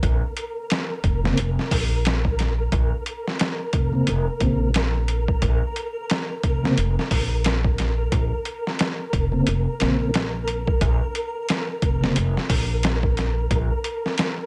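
Gritty, overdriven, compressed and pitched-down sampler-style drums with a thumpy kick and medium-tuned snare lead this brooding, cinematic trip hop excerpt at 89 BPM in Bb minor, swung on the 16ths, over a woody, growly pizzicato upright bass, with a soft, flute-like tonewheel organ entering at 1.2 seconds through chorus vibrato, fast rotary speaker, tremolo and tape echo, while a faint, flickering granular texture sustains on a detuned, reverberant Bb in the background.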